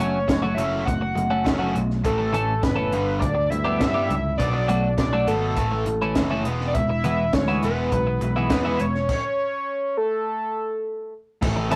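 A fat, warbling analog synth lead with chorus, vibrato and a filter sweep sits up front, carrying a carefree yet wistful indie rock melody over a straight 4/4 groove. Beneath it, a bright, compressed twelve-string electric guitar and a cranked, overdriven stack guitar play riffs, while a growly picked bass and a dark cocktail drum kit with a punchy kick and a high-tuned snare hold the bottom. The band moves through a shifting minor-to-major progression before hitting a stop at 9.1 s, all captured in a rough rehearsal-room recording with a small room's ambience in this brief cut from a longer piece.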